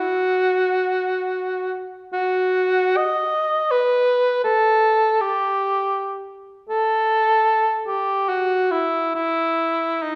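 The rhythm moves freely in 3/4, with a rubato pulse that drifts between 67 and 84 BPM and lends this brief classical fragment, cut from a longer piece, an expressive feel. A solo cor anglais carries the whole passage from 0.0 to 10.2 s, playing alone and sitting up front in the sound. Its tone is warm with a smooth top and a light vibrato, moving within a range from D#4 to D#5 in a classical style. The mood is yearning and meditative. A wet recital hall reverb, with an RT60 of 1.6 s, surrounds the instrument with the resonance of a church or concert hall.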